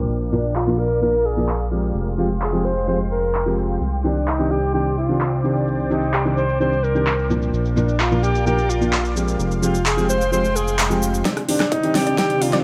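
A mellow alto saxophone carries the melody through this emotional, anthemic excerpt of festival progressive house, entering at 0.3 seconds and singing in a classical style with light vibrato and a tape echo trailing its phrases. Beneath it, a felt-muted upright piano plays soft, intimate accompaniment with a vintage tint, while a lush unison pad holds bright, chorused and phased chords, and a fat analog bass sits up front, all three pumping against the beat at 129 BPM in C minor. A big-room dance drum kit of handclaps, rim clicks, shaker, metallic hats and a huge snare drives the straight 4/4 groove as a filter sweep opens the first section over a Bb, Fmadd9 and Cmadd9 progression. At 11.3 seconds the music shifts into a build-up with a drum fill, where a dense compressed supersaw riff arrives in the background under its own filter sweep, joined by a punchy unison pluck arpeggio and a layered electronic kick. 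A barely audible riser closes the passage, and the mix is finished with light reverb and a low-pass filter.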